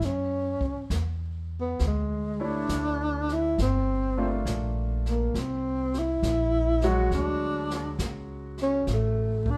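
A slow swung 4/4 at 68 BPM carries this tender, intimate jazz ballad, with a distant, roomy brush kit keeping time behind a woody, thumpy pizzicato upright bass placed up front. A dark, whispered tenor saxophone sings the melody close to the listener, using vibrato, subtone and scooped notes with a soft attack. A clear, vintage-toned grand piano supports it through Dmaj9, Gm7 and C7 to Dmaj7#11, in light reverb.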